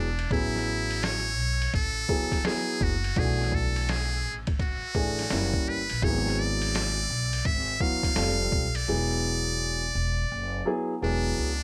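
A buzzy, close-miked trumpet with a metal mute carries the melody up front with forceful, scooped notes over a dark, mellow grand piano and a woody, growly pizzicato upright bass, while a muffled, pitched-down sampler-style drum kit with a thumpy kick and hi-hat, ride and snare plays from 0.2 to 8.9 seconds in this smoky, mellow jazz-hop excerpt at 84 BPM with a swung feel and light reverb, moving through jazz chords such as Amaj7, Bm7 and E9.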